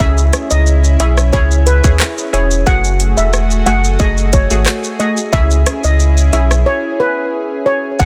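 Hypnotic and sultry, this 90 BPM dancehall excerpt in C# minor sets a shimmering, mellow steel pan lead with delay over bright, detuned sawtooth chord stabs with chorus, a lush, warbling vintage unison pad that pumps to the sidechain, a deep, thick saturated sub bass sitting up front, and a tight electronic island pop kit of metallic hats, handclaps, kick, rim click, shaker and a softly clipped snare, all moving from C#m to F#madd9 and back before a break at 6.7 seconds, under dense digital ambience and a heavily limited modern master.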